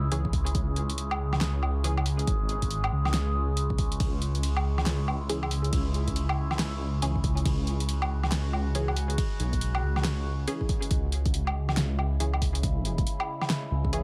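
Dark and meditative, this excerpt of deep dubstep at 139 BPM in C# minor rides a swung half-time feel, with a rumbling, detuned sawtooth bass up front under a resonant drone of moving overtones, muted dub chord stabs that drop out at 2.0 seconds and return at 5.3 seconds through phaser and dub echo, a tape-warm deep house kit of fat snare, handclaps, hi-hat, ride and woodblock, and a deep electronic kick, all set in a dry mix with vinyl crackle over a single C# minor chord.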